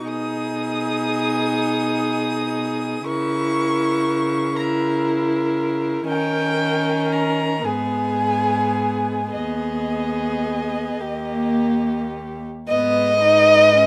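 Elegiac and melancholic, this slow romantic classical excerpt for string quartet drifts with rubato in 6/8 at 34-41 BPM in G# minor: a dark first violin sings the melody high above a second violin that sits up front with a woody, vibrato-laden tone, while an intimate, airy-bowed viola fills in the accompaniment and a rich, floating cello carries the bass from a distance, all four bowed sul tasto in light reverb as the harmony returns to G#m at 12.7 s.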